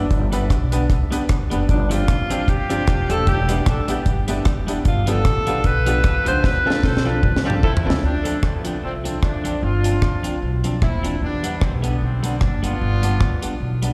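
Ska at 151 BPM with a lightly swung, mischievous and energetic feel, heard as a live gig through a venue's PA in a recital hall with light reverb. A dry, up-front reggae kit with a high-tuned snare and tight kick sits alongside a growly, woody pizzicato upright bass, while a twangy, compressed clean electric guitar stays in the background and a brilliant, slightly detuned upright piano with audible action noise plays echoing stabs until 8.0 s. A distant, roomy tenor saxophone with light vibrato carries the melody from 1.7 s, a drum fill closes its passage, and a smooth-topped horn section takes up the tune at 7.6 s.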